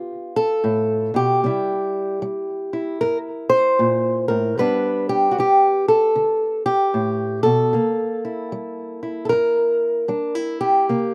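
Acoustic country blues with a laid-back, soulful mood, moving at an easy swung pace in four. A single fingerpicked, ladder-braced acoustic guitar carries the whole recording, plays alone throughout, and sits up front in the mix. Its tone is dark, woody and boxy, with the character of old strings, and it ranges from the low G2 up to C5. The brief passage, cut from a longer piece, circles through G7, C7 and G, landing on C7 again at 7.7 seconds before ending at 11.1 seconds. Recorded outdoors with little reverb, the sound is dry.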